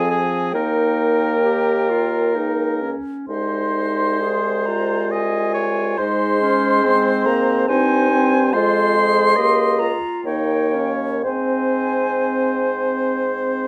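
Moving in a rubato 3/4 at roughly 58-73 BPM, this slow romantic movement for wind quintet in Ab major unfolds with a lyrical, warm mood, cut from a longer piece. The concert flute carries the melody between G5 and C6 with an airy tone, vibrato and a soft attack, sounding close and expressive, while the oboe sits up front on a second line from Ab4 to Eb5, its timbre warm and lightly vibrant. Beneath them the clarinet adds a bright, classical-style accompaniment between C4 and Ab4, and the French horn fills in from F3 to C4 with a distant, roomy glow. The bassoon anchors the bass from C2 to Ab2 with light vibrato and a vintage character. The harmony moves from Fm through Eb and Ab/C to Ab, then passes through Bbm/Db and Eb7 before settling on Ab at 11.2 seconds, all within a light reverb. The flute drops out at 13.2 seconds, and the other four parts sustain until 13.7 seconds.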